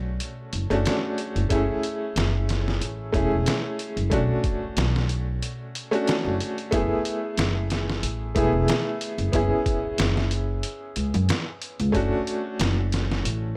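A clear, smooth upright piano and a growly upright bass open this dark, cinematic trip hop excerpt together. The drum kit follows a moment later at 0.2 seconds. The piano has a vintage character, with tremolo and tape echo on its chords as it moves from Bm7 into F#m7. The plucked bass sounds woody and acoustic, with steel-string bite, and sits up front beside the piano. The sampler-style drums are compressed, pitched down and gritty, with a thumpy kick, a medium-tuned snare and hi-hat, all over a lightly swung sixteenth feel. Around 6.7 seconds the harmony moves through F#m11 and C#m7/F# before settling on a rootless E9sus4, all in a small room with light reverb.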